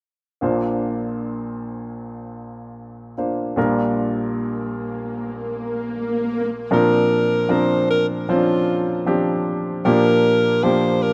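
A steady, straight 4/4 pulse carries this tender, hopeful pop fragment, cut from a longer piece, as a clear, polished baby grand piano plays up-front accompaniment over Bbadd9 and Gm7/Bb chords. An electronic swell sound effect arrives at 4.4 seconds, and at 6.7 seconds a bright alto saxophone takes the solo melody in a pop style, with light vibrato and a soft attack. Light reverb and small-room ambience give the whole piece the feel of a rough home demo.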